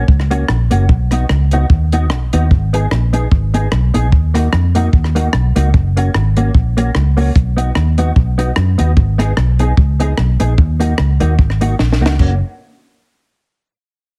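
Ska with a bouncy, upbeat feel and a light swing, cut from a longer piece. A compact cocktail drum kit sits up front in a small room with a punchy kick, a high-tuned snare, hi-hat, rim clicks and crash cymbal, its sound smooth with a rolled-off top, and a drum fill arrives at 11.8 seconds. A vintage muted fingered electric bass, round and foam-muted with an amped tone, holds the low end just as prominently. A mellow, clean electric guitar plays accompaniment further back in the mix, its dark, compressed tone thickened by ensemble chorus. The harmony cycles through F#, B, G#m and D#m twice before landing back on F# at 12.2 seconds. The sound is dry and heavily compressed, like a radio broadcast.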